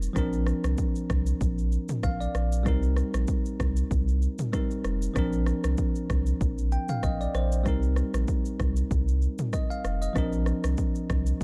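Afrobeats with a hypnotic, sultry mood, this short cut from a longer piece rides a lightly swung sixteenth-note feel in 4/4. A deep house drum kit of layered electronic sounds, with a punchy kick, rim click, shaker and toms, sits up front throughout. Also up front, a deep, full sub bass with an added octave blends sine and triangle tones, with a fast attack and sustained notes. A bell-like tine electric piano, bright, clean and direct, carries the accompaniment and breaks into short fills at 1.7 and 6.4 seconds. The harmony alternates between Bbadd9 and Cm7 over a dry, gritty hardware sound with little reverb.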